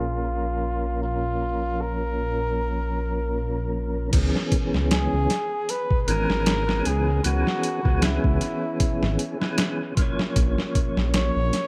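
Smoky and dark, this trip hop excerpt opens with a filter sweep under a veiled, bucket-muted trumpet carrying a jazz-style melody with vibrato and tape echo, while a percussive tonewheel organ with fast rotary speaker, chorus vibrato and tremolo supplies the accompaniment over a deep, rumbling detuned saw bass. At 4.1 seconds a gritty, pitched-down boom bap sampler-style kit enters up front, its thumpy kick and medium-tuned snare set in small room ambience with dub echo. The whole mix is echo-heavy and low-pass filtered, moving from A#m to C#m7 and back to A#m at 10.4 seconds.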